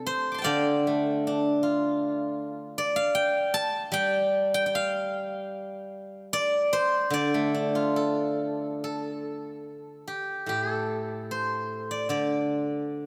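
Contemplative and elegant, this short passage of Chinese traditional music, cut from a longer piece, features a single steel-string zither played solo in D yu mode. The pulse sits around 74 BPM in 4/4, but the beats are uneven and the phrasing flows freely in rubato. The zither is played with fingerpicks and sounds bright, silvery and ringing, spanning from A2 up to D6 and placed up front in the mix. A lush hall reverb with a long 2.6-second tail soaks the instrument, giving the whole recording a dreamy atmosphere. The opening section runs to 8.8 seconds before a second section carries the music through to 13.1 seconds.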